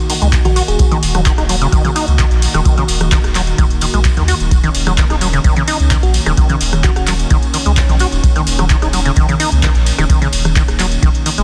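A straight 4/4 pulse at 129 BPM drives this hypnotic, gritty acid house excerpt in Eb minor, built on a deep electronic kick and a booming analog drum machine with handclaps, metallic hi-hats, ride cymbal, rim clicks and toms, plus a jingly, close, dry tambourine tucked in the background. A rubbery, resonant sawtooth acid bass riff with overdrive and dub echo sits above a round sine sub bass that pumps with the sidechain, while a smooth, warbling, detuned vintage pad holds sustained chords on a single Ebm harmony throughout. A sparkling, bell-like FM electric piano, treated with chorus, phaser and tape echo, surfaces briefly at 0.5 and 6.0 seconds, all within light reverb and a dense, heavily limited master.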